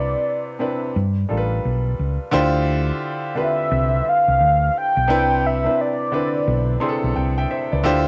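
An 87 BPM groove in 4/4 swings its sixteenths in this soulful, introspective neo-soul R&B clip in D dorian, cut from a longer piece, moving through Cmaj9, G9 and Dm11 before returning to Cmaj9 at 5.1 seconds. A mellow, horn-like synth lead with a soft attack, vibrato and chorus carries the melody until 6.8 seconds, over a clear, intimate grand piano whose action noise is audible and a dark, round, hollow-body electric bass played with the fingers. The piano takes a fill from 6.5 to 7.8 seconds, and light reverb gives the whole a small-room feel.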